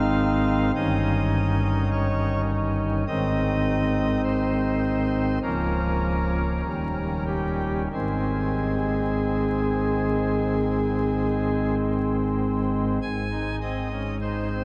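Classical chorale-style music for solo pipe organ unfolds at a slow, rubato 46-52 BPM in 4/4, in Ab major, with a majestic yet serene mood. The organ speaks through a nasal cornet solo stop with tremulant, voiced in a romantic manner and placed up front, its range reaching from Db1 at the bottom to Ab5 at the top. The harmony moves through Ab, Eb7/G, Bbm/Db and Eb7 before settling back on Ab at 7.9 seconds. A new section begins at 13.0 seconds, and the passage breaks off at 14.6 seconds, having been cut from a longer piece. A drenched cathedral reverb with a 6.1-second decay surrounds the organ, while a layer of vinyl crackle and a faint mains hum gives the sound an aged, archival character.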